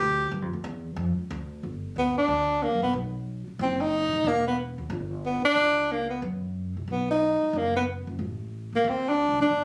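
Swinging and relaxed, this small-group swing and bop jazz fragment, cut from a longer piece, puts a warm, close-miked tenor saxophone with vibrato up front on the melody, opening with a short solo before the change at 1.6 seconds, over a woody, pizzicato upright bass on steel strings, all caught on a phone in a club room with light reverb and compression as the harmony moves through G5, B, Em and on toward D7.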